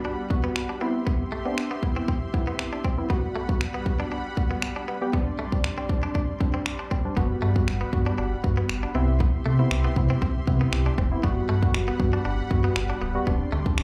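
Dance-pop at 118 BPM in G major with a summery, upbeat mood, this excerpt opens on a crisp, detuned wavetable chord stab with sidechain pumping and slapback echo, a smooth, evolving soft supersaw holding sustained chords, and a twangy, clean electric guitar riff with subtle chorus, moving through Gmaj7, Cmaj7 and D7sus4. A house drum kit of finger snaps and a punchy kick sits up front from 0.3 seconds, and a deep, full sine sub bass with octave, also pumping, enters at 7.2 seconds. The mix carries light reverb and the feel of a live gig heard through a club's PA.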